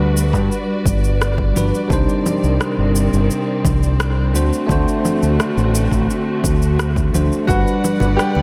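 A punchy, layered electronic kick and a produced pattern of shaker, rim click and congas set a straight 86 BPM groove in 4/4, while a growling fingered bass, overdriven with tube saturation, sits up front in this sunny, smooth sunset chillout excerpt in G major. A bell-like tine electric piano with tape echo and a dark chamber string section, bowed with vibrato and portamento, carry the Gmaj7, Cmadd9 and D7 changes, all bathed in a dreamy, lush hall reverb. As the harmony returns to Gmaj7 at 7.5 s, a brilliant baby grand piano enters with a short tape-echoed melody, joined by very quiet, distant, low-tuned acoustic congas.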